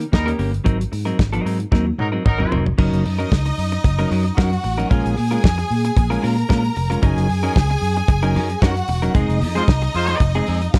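A damped 70s drum kit anchors this short disco excerpt at 113 BPM in a straight 4/4, its dry, dark sound built on a tight kick, medium-tuned snare, hi-hat, toms and crash cymbal sitting up front. A fingered electric bass with a growly, amped tone sits alongside it for the whole passage, while a semi-hollow electric guitar adds clean, picked, scooped accompaniment with a hollow-body character. A clear, vintage horn section punches in with stabs from 0.1 to 2.6 seconds, around a drum fill that closes the opening part, as the harmony moves through Eb7 and Ab9. At 2.8 seconds a bright, lush violin section enters with a focused, bowed second line full of vibrato, as the harmony moves among Gb6, Bbm7 and Fm7. The horns return briefly near the end for a band accent, and the whole passage feels danceable and glamorous in a close, nearly reverb-free room.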